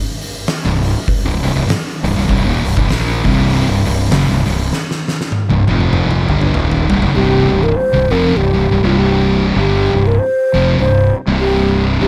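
Dark, dry and heavy, this hypnotic stoner and doom metal excerpt opens on an oversized low-tuned drum kit with a fat snare and punchy kick in a pumping stone room, joined by two thick fuzz guitars riffing in the background and a growly fuzz bass up front, with a drum fill from 4.7 seconds before the kit drops out at 7.1 seconds, when a very quiet double-tracked overdriven guitar adds another riff and a breathy, hollow alto flute with delay carries the melody over the continuing fuzz guitars and bass.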